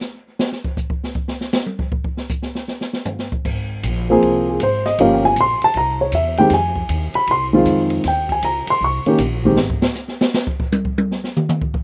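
A swinging 4/4 at 157 BPM opens with the drums alone for 3.5 seconds, an open kit with dark cymbals, a high-tuned snare and a boomy kick, before upright bass and a dark baby grand piano join in Ab major for a brief smoky, late-night stretch of small-group swing and bop over Ab69, Gm7b5, C, Fm7 and Eb7. The pizzicato bass is woody with steel strings, while the up-front piano sounds mellow and intimate, its short sustain carrying audible action noise. The sound is dry and roomless, and the drums solo again from 9.6 seconds in this fragment cut from a longer piece.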